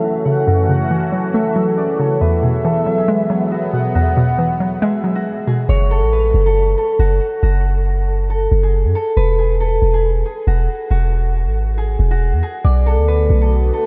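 A dark, melancholic half-time hip hop excerpt at 138 BPM in F# minor opens with a ringing, fingerpicked concert harp melody over a hollow, bouncy square pluck, a velvety detuned synth lead with vibrato and an evolving, bright sawtooth pad, all under a filter sweep. At 5.7 seconds the lead, pluck and pad drop away and a deep, boomy 808-style bass takes over beneath the harp, moving from F#m through Eadd9, before the pad returns at 12.6 seconds on a Bm7. The dreamy mix is soaked in a huge ambient reverb, with analog delay trailing the harp and the lead.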